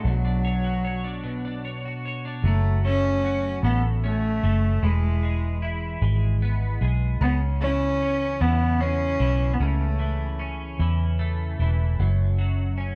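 Melancholic and dramatic, this six-eight pop ballad moves slowly at 50 BPM in F# minor, cut from a longer piece and framed by a dark production with light reverb and studio ambience. A single bowed cello with a nasal, reedy gut-string tone carries the melody up front until 10.5 seconds, over a double-tracked twelve-string electric guitar that sounds bright, clean and twangy. A vintage foam-muted fingered bass, round and amped, sits up front beneath chords that move from Bmadd9 through F#m, E and C#m before returning to F#m at 12.0 seconds.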